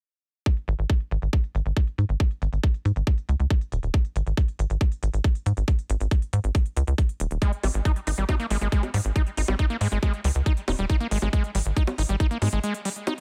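A straight 4/4 pulse at 138 BPM drives this hypnotic, intense psychedelic trance clip, cut from a longer piece, with a tight, overdriven electronic kick drum sitting up front from 0.5 seconds over a G#5 chord. Layered electronic hi-hats and bongos add crisp, overdriven detail under low-pass filtering, and a filter sweep runs across the drums throughout. A punchy sequencer bass built from sawtooth and square waves enters at 0.7 seconds, its filtered pluck and moving notch giving each fast-attack note a decaying snap in the low register. At 7.4 seconds a squelchy, gritty acid bass riff arrives higher up, its resonant sawtooth tone distorted, pumping with sidechain compression and trailed by digital delay. The sound is dry and close, and a brief break at 12.6 seconds closes the clip.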